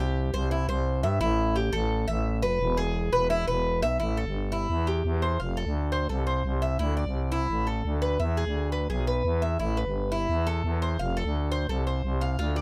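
Latin Cuban son and guajira in A minor moves at a danceable 172 BPM in straight 4/4, with a sultry mood throughout this short piece cut from a longer track. A Cuban tres plays arpeggios from start to finish, its picked double strings sounding bright and metallic, with some strings doubled at the octave. Beneath it, a growling FM bass holds the low end, thick and sine-based with a fast attack and sustained notes. Both parts sit up front in a close, detailed recording with light reverb. After an opening passage over C, A5 and E chords, a new section begins at 4.0 seconds, moving through Am7, F, Dsus2, E and Amadd9 before landing on F.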